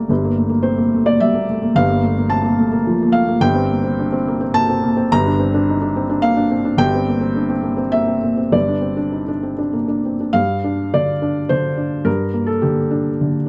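Wistful and melancholic, this short cut from a longer neoclassical minimalist piano piece in G minor unfolds at 107 BPM in a rubato 3/4, played by a solo felt-muted upright piano whose soft, intimate, short-sustained tone spans G1 to Bb5, sits up front in close, detailed miking with light reverb, and settles on a Gm7 chord as a new section begins at 10.4 seconds.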